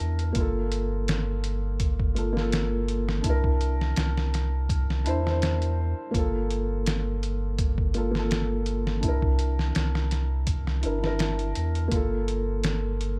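Brooding, hypnotic trip hop with a gentle swing, in which a soft, intimate felt-muted upright piano colored by harmonic tremolo and tape echo circles between Gm7 and C7 over a round, sine-like sub bass thickened with tube saturation, while a muffled, pitched-down, sampler-style drum kit with a thumpy kick, medium-tuned snare and hi-hat sits up front in studio reverb, all wrapped in a dark digital ambience.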